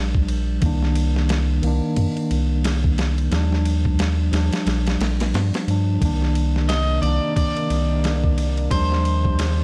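A mellow tine electric piano with tremolo, sampler grit and tape echo and a round, deep analog bass open this melancholic, cinematic trip hop excerpt at 89 BPM in C minor, joined by a thumpy, pitched-down boom bap kit of kick, snare and ride swinging over Ebmaj7 and Cm7 in a dark production with light reverb, before a warbling, nostalgic pad enters in the background at 6.4 seconds and a slightly broken-up electric guitar picks a short melody through tape echo from 6.7 seconds.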